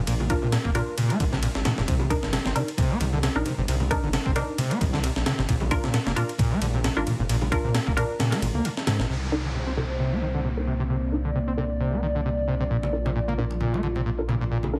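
A swung 133 BPM breakbeat groove in C minor drives this swaggering, funky excerpt. Gritty sampler-style drums with a thumpy kick and high-tuned snare hold the front until 9.1 seconds, the kick dropping out just before. Bright, hard-handed congas and bongos sit in the background. A thick, beating detuned saw bass with tube saturation anchors the low end. A squelchy, screaming acid line with distortion, cassette tape and delay takes a filter sweep from 9.1 seconds. Muted dub chord stabs with lush chorus move between Bb and Cm7. At 9.1 seconds a moody analog pad with 12-bit grit and sidechain pumping enters alongside an electronic downlifter, all set in a heavily compressed, radio-like sound.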